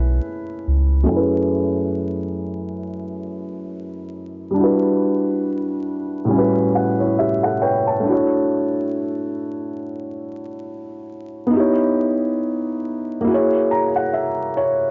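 A gently swung 4/4 groove with a sixteenth-note lilt carries this hazy, reflective lo-fi hip hop excerpt, where a round, deep sub bass sounds only at the start beneath a soft, intimate felt-muted upright piano that plays low-passed chords throughout, takes a filter sweep from 1.1 s onward and adds fills at 6.3 s and 13.3 s, the whole mix set in moderate studio reverb with vinyl crackle and the warbling pitch drift of worn cassette tape.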